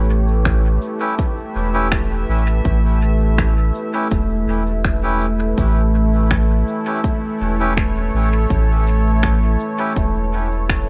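Spacious and hazy, this ambient dub excerpt moves at 82 BPM in A mixolydian over a single A7 chord, with a deep, moody sawtooth pad sustaining chords through chorus and its own reverb, a round, soft sub bass with tube saturation sitting up front, an overdriven electronic kick from 0.5 seconds, tape-toned electronic finger snaps and cabasa trailing dub echo, and reedy, nasal melodica stabs entering at 1.0 seconds and echoing into light reverb.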